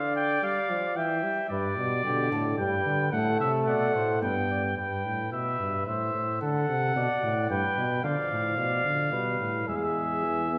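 An up-front, vintage-toned trumpet carries the melody in this stately, joyful classical canzona for brass ensemble, moving in a straight 3/4 at 110 BPM, while a mellow flugelhorn with light vibrato sings the imitative second line close beneath it. A trombone with gentle vibrato supplies the accompaniment, falling silent between 4.8 and 8.0 seconds, and a punchy bass trombone enters at 1.5 seconds to anchor the low end. The ensemble sounds in a reverberant recital hall with a churchly glow, in a short passage cut from a longer piece.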